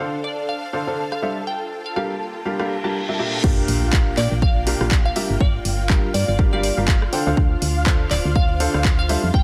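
Softly ambient with a light reverb, this bittersweet, soulful piano house excerpt opens on a woody, slightly detuned upright piano riff with delay, a silky analog string pad under a filter sweep, and an intense bowed studio string section, all three pumping against the beat, while a crystalline wavetable pluck carries the melody through chorus, tape colour and delay. A tape-warm analog drum machine joins at 1.1 seconds with hi-hat, handclaps, rim click and crash, and a reverse cymbal and sub drop at 2.6 seconds build into the drop. At 3.4 seconds a punchy, up-front electronic kick and a round, dark FM bass with tube saturation arrive together, driving the groove over the swung 4/4 to the end.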